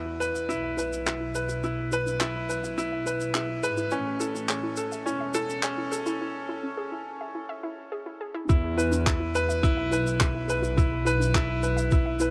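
Lightly reverberant and high-pass filtered, this luminous, tender piano and strings electronica piece at 105 BPM in E major sets a clear, up-front grand piano riff with delay over a rich, earthy bowed chamber double bass section that pumps with sidechain, while a warbly, lo-fi square-and-sawtooth pluck spins mellow arpeggios through chorus and delay in the background above dark, smooth shaker and handclaps, with a filter sweep building toward a break at 6.2 seconds before the drop at 8.5 seconds, where a muffled, thumpy, pitched-down electronic kick drum enters.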